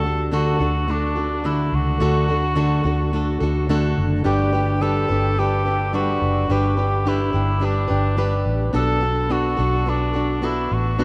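Sunny and easy-going, this acoustic pop excerpt moves at 107 BPM in D major with a light sixteenth-note swing, as a mellow, classical-style cor anglais carries the melody over a full-bodied, fingerpicked jumbo steel-string acoustic guitar and a dark, round, foam-muted electric bass, all three up front and bathed in a cathedral reverb that opens onto a vast, echoing space while the chords move from D to G to Bm7.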